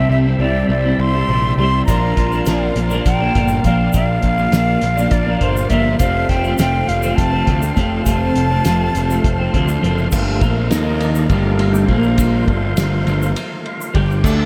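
A brisk 7/8 pulse at 204 BPM in eighths drives this trippy, hypnotic psychedelic rock excerpt in G dorian, built on a bright, twangy, phased and double-tracked twelve-string electric guitar riff and a fuzzy, up-front picked bass, with the cloth-damped, thuddy drum kit and a grainy, distant egg shaker entering at 1.9 seconds. An airy silver concert flute with unsteady vibrato and analog delay carries the melody until 9.8 seconds, floating over thick, gritty overdriven tonewheel organ chords turning through a slow rotary speaker. At 10.1 seconds the organ steps forward for a key-clicking solo over Gm7, Eb5 and Bb5 chords, and the whole dreamy mix is soaked in huge ambient reverb.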